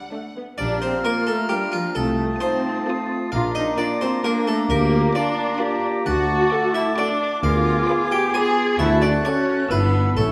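In a straight 3/4 at 131 BPM, this playful, mischievous film cue, cut from a longer piece, sets a full, plucked harpsichord melody alongside a very quiet, expressive chamber violin melody, with a second violin line, a smooth background viola accompaniment, clear clarinet, pure silver flute and warm oboe second lines, mellow French horn chords, and a bass of dark tuba, close double basses and distant cellos, all in a wet scoring-stage reverb as the key moves from Bb major to D major at 6.1 seconds.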